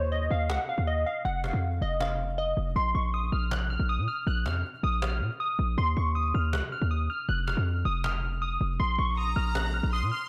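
This dark, melancholic hip hop and trap fragment moves at 159 BPM in a half-time feel in Bb minor, with chords circling Dbadd9, Ebsus2/F and Bb5. A glassy wavetable pluck carries the melody up front, its crystalline, detuned digital tone shaped by ring modulation, a moving notch, a filter sweep and chorus, with each note striking fast and decaying. Beneath it, a punchy, heavy 808-style bass hits hard with a sine body and a noise layer, sitting prominently in the mix. A woody cajon with faint snares sounds distant, as if set back in a large room. At 9.2 seconds, a lush studio violin section enters as a second line, bowed smooth and even with vibrato. The whole is placed in a small room reverb.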